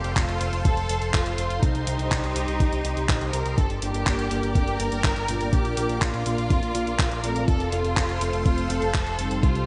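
Italo disco at 123 BPM with a playful, danceable mood, where a thumpy, gritty electronic kick sits alongside a fat, up-front analog bass, dusty soul sampler-style handclaps and hi-hat soaked in gated reverb, a lush, bright unison pad holding sustained chords with chorus and phaser, and a rich, distant violin section carrying the melody through delay, while mellow, brassy synth stabs join at 3.8 s over chords moving from F through Cm, Gm and Bb back to F.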